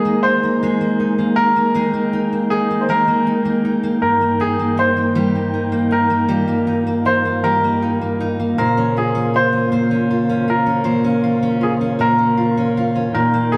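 A fingerpicked steel-string jumbo acoustic guitar sits up front with a full-bodied tone, carrying the accompaniment throughout this swaying, romantic pop fragment. A clear, polished concert grand piano plays the melody in a narrow range around Ab4 to C5, its short sustain and deep bass giving each note a present, crisp edge. Underneath, a mellow tonewheel organ holds sustained chords, its round, dark voice lightly overdriven and spun through a fast rotary speaker. The band moves at a slow 53 BPM in a lilting 6/8, shifting from Absus2 to Eb/G at 4.0 seconds and settling on Bbmadd9 at 8.6 seconds. The players share one room, and a wet stone reverb with a 1.5-second tail wraps the performance in an intimate, live ambience.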